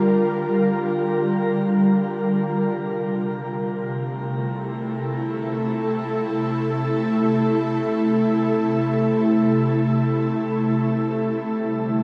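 Ambient music in free time, luminous and serene, carried by a single ethereal airy pad heard alone from 0.0 to 12.0 seconds. The pad sits up front with a mellow, detuned sawtooth-and-triangle blend laced with a noise layer, its slow attack and long release joined by ensemble chorus and built-in reverb. Bathed in a shimmering reverb with an 8.5-second tail, it drifts from Bb6 to Am and back to a rootless Bb6 in this excerpt cut from a longer piece.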